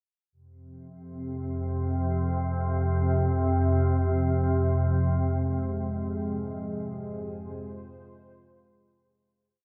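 Dark ambient drone in a cavernous, ominous mood, built on a calm, organ-like drone with a wave-folded sine tone and ensemble chorus sitting up front from 1.1 s, joined at 5.6 s by a deep, moody pad of detuned sawtooth and sub octave with chorus holding slowly shifting sustained chords, all bathed in a huge wet reverb and the warbling pitch drift of worn cassette tape as the whole piece fades out from 4.8 s.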